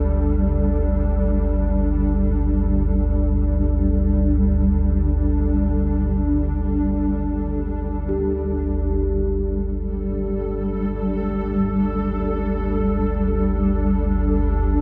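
Steeped in a cavernous cathedral reverb, this dark, desolate ambient drone excerpt drifts in free time, with a deep, ominous rumbling drone and a cloudy, blurred granular pad held up front for its full 14.8 seconds while a bronze singing bowl rings softly and meditatively in the background, its metallic tone slowly beating.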